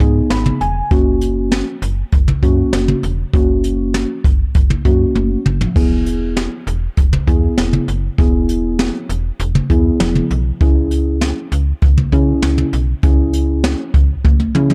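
A straight 4/4 groove drives this melancholic synth-pop piece, carried by an up-front jazz brush kit with dark cymbals, a high-tuned snare and a boomy kick, and with drum fills at 5.2 and 14.2 seconds. Muted, felt-like synth keys with an intimate, chorused, filter-swept tone open with a short fill and carry the G#m, F#, E and C#m chords, while a snappy, metallic FM bass with transformer saturation underpins them. The sound is dry and gritty, like a hardware recording on cassette tape, set in a small room.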